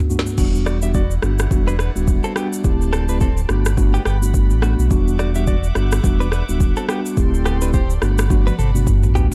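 Afrobeats at 106 BPM in E minor, this hypnotic, smooth excerpt rides a swung sixteenth-note feel through a cycle of Em9, D7sus4 and Gmaj7 chords. An up-front, overdriven electronic drum kit opens with a short fill, its deep kick and woody snare joined by rim clicks, shaker, crash cymbal and toms. A mellow tine electric piano plays accompaniment from the start with a clean tone heard through its built-in speakers. At 0.4 seconds a full, sine-like sub bass with an octave enters with fast attack and sustained notes, sitting prominently beneath a distant, floating string section that holds soft-bowed sul tasto chords. A bright, compressed electric guitar, picked and recorded direct, adds a clean riff from 0.7 seconds, touched by tape echo, before the drums close with another fill from 8.3 seconds. The production is dark and dry, with little reverb.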